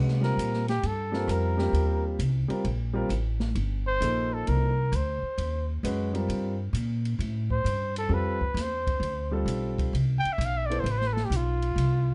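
A breathy trumpet with vibrato and scooped notes carries a searching, intense solo over modal jazz in C dorian, swung at 132 BPM in 4/4, its mellow tone set in plate reverb. A woody pizzicato upright bass and an intimate grand piano with audible action noise sit up front, the piano dropping out at 10.8 seconds, while an acoustic drum kit with dark cymbals and a boomy kick plays from a small room. The harmony moves from Cm7 to a rootless Dm9 at 7.2 seconds in this short cut from a longer piece, and the overall production is dark and lightly reverberant.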